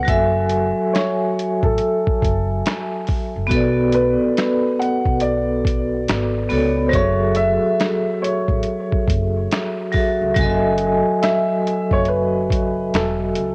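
Hazy and nostalgic, this short cut from a longer lo-fi hip hop piece sits at a relaxed 70 BPM in F# minor, with a swung sixteenth-note feel. A dark, mellow upright piano carries the melody in a narrow range from A4 to F#5, its long sustain softened by cassette tape and trailed by tape echo. Up front, a vibraphone struck with hard mallets provides metallic, ringing accompaniment, its slow motor vibrato adding a smooth shimmer across the harmony. Underneath, a woody pizzicato upright bass with steel strings holds the low end, while a compressed, muffled sampler-style drum kit enters at 0.1 seconds with a thumpy kick, medium-tuned snare, hi-hat and finger snaps. The chords move from F#m7 to Bm7 and back to F#m7 before settling on F#m9 at 10.4 seconds, all bathed in a moderate spring reverb with the intimate grain of a home cassette recording.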